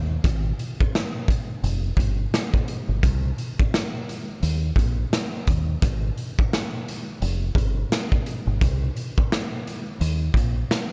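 A loping boom-bap hip-hop groove at 86 BPM in 4/4, swung on the sixteenths, sets a reflective, dark mood in this short cut from a longer piece. A deep, round fingered electric bass sits up front from the start, dark and punchy, while a raw garage drum kit enters at 0.2 seconds with hi-hat, kick drum, rim click and snare drum. The kit sounds gritty and saturated in a bright stone room that pumps, with a punchy kick and a rolled-off top, and the mix stays dry and close.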